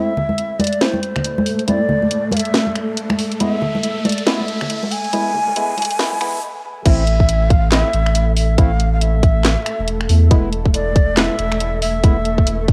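Brooding and cavernous, this deep dubstep excerpt at 139 BPM in A harmonic minor has a breathy, bright ney carrying the melody through dub echo over a cloudy granular pad, hollow organ-like stabs under a filter sweep, a riser, soft-handed congas and a garage drum kit with a cracking snare, and after a stop at 6.4 seconds the drop at 6.9 seconds brings in a deep, saturated sub bass and a tight electronic kick, all in a spring-reverb ambience with a home-cassette character.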